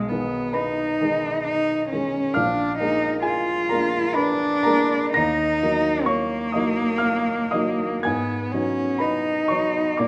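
Set up close in a reverberant recital hall, this elegiac romantic duo for cello and grand piano moves at a slow, rubato 55-68 BPM in 3/4 and is cut from a longer piece. A rich bowed cello carries the solemn melody in its middle register, sounding with a soft attack, expressive vibrato and portamento. A warm, natural baby grand piano accompanies across a broad span as the harmony passes from Abm/Cb through Bb7 and Ebm to Abm7.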